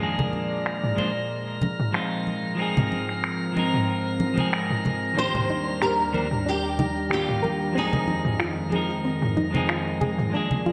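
Sunset chillout with a blissful glow, cut from a longer piece: a clean, up-front electric guitar with delay and a breathy, detuned pad with chorus carry the chords from Bb7 through Ab6, Ebmaj7 and Fm7, while a filter sweep runs on an analog synth pad. An overdriven, layered deep house kit of cabasa, finger snaps and filtered toms under gated reverb sits beside bright, close congas, and a glassy texture of drifting overtones shimmers high above. At 5.2 seconds a fingerpicked flamenco guitar enters up front with audible finger squeak, playing melody until 9.7 seconds, joined by dark, round pluck arpeggios in the background, all bathed in a lush plate reverb with a bright 1980s-style digital sheen.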